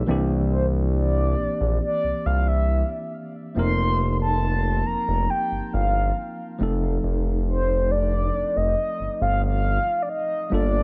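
A straight 4/4 pulse moves at an unhurried pace in this moody, late-night contemporary R&B excerpt. A smooth, nasal synth bass sits up front from the opening, its sustained low notes carrying a touch of vibrato. A tine electric piano provides the accompaniment, worn and slightly out of tune, with a clean tone that sounds as if it is coming through built-in speakers. At 0.5 s a mellow, horn-like synth lead takes the melody in a higher register, round and dark with a soft attack, a sub octave, a filter sweep and vibrato, colored by chorus and delay. The harmony moves from C9 to F7sus4 and settles on F7 at 6.6 s, all set in a digital ambience.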